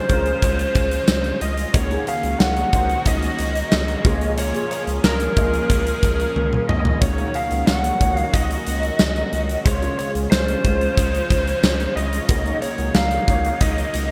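Nostalgic and romantic, this 1980s-style pop passage in Db major moves at a straight, unhurried 91 BPM, with a dark, lo-fi lead guitar through a small cranked amp carrying the overdriven, picked melody over a very quiet, double-tracked crunchy rhythm guitar, a polished baby grand piano with ensemble chorus, and an airy, detuned sawtooth pad with chorus sitting in the background. A round analog bass holds a deep, sustained Db2 beneath a huge arena drum kit with gated reverb, punchy kick and medium-tuned snare up front alongside hi-hat, tambourine and toms, and the kit drops in a fill at 6.4 seconds. The chords circle from Dbmaj7 through Ebm7/Db, Bbm7/Db and Gb6/Db over a held Db bass, all wrapped in bright digital production with plate reverb in this section cut from a longer piece.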